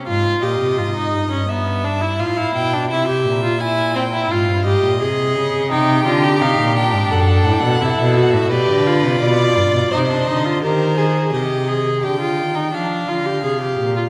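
A focused, close viola sits up front in this solemn, contemplative baroque-style string quartet fugue at 85 BPM in 4/4, joined by a clear, lightly vibrato first violin carrying the melody, a rich, distant-sounding cello on the bass, and a smooth, even second violin line entering at 5.7 s and stopping at 11.3 s, all bowed by single players and set in a lush concert-hall reverb as a brief cut from a longer piece.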